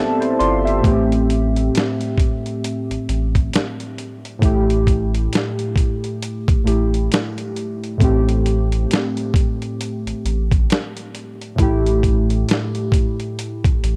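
Warbling, nostalgic synth keys with a chorus sheen open this reflective, hazy lo-fi hip hop excerpt with a short fill, then carry the A minor harmony from 0.8 seconds at a relaxed 67 BPM with a swung 16th-note feel. A gritty, compressed sampler-style drum kit with a thumpy kick, a medium-tuned snare and a tape-warm tone sits up front beside the keys, while a deep, full sub bass with an added octave sustains beneath the Am7 and Emadd11/A changes. Light reverb and digital ambience surround the mix.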